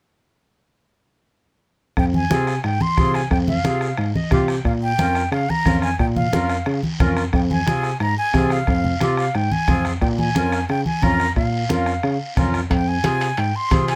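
This passionate, driving cumbia excerpt opens at 2.0 seconds with the full groove already underway: a breathy concert flute carries the melody high over a worn, slightly out-of-tune tine electric piano playing the bass line, which sounds clean and up front through a combo amp. Beneath them, a bombo struck with a soft beater gives a live-room thump. Low-tuned congas with a thick skin and hard hands sound close and dry, while a raspy guiro sits distant and faint, as if in a large room. A reedy, dark accordion enters almost immediately as accompaniment, with a slow beating in its tone, and adds a smooth fill at 4.0 seconds. Ringing metal-shell timbales, compressed and saturated, join in the background at 12.7 seconds as the minor-key harmony cycles. The sound is dry and detailed, with little reverb and close microphones that bring out the flute's straight tone and soft attack.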